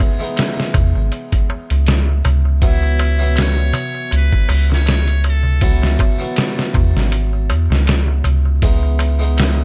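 Trip hop with a melancholic, hypnotic pull, cut from a longer piece: a muffled, pitched-down sampler drum kit with a thumpy kick sits up front beside a round, deep analog bass carrying tube saturation that enters at 0.7 seconds, while a crisp metal-shell darbuka adds small, dry accents. Underneath, a close-miked harpsichord plays accompaniment through harmonic tremolo and vintage 12-bit sampler grit, moving from C#m7 to Esus2/C# and back. A buzzy, brilliant trumpet with a metal mute takes the melody from 2.7 to 6.0 seconds, trailed by tape echo in an otherwise nearly reverb-free, intimate mix.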